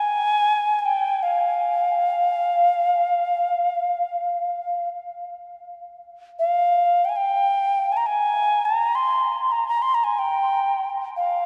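This haunting, meditative world-music passage, cut from a longer piece, features a solo alto ocarina playing alone from 0.0 to 11.5 seconds. Its airy clay tone sits up front, with rolled-off highs, expressive vibrato and tongued notes. A long, wet cathedral reverb places the ocarina in a vast, echoing space.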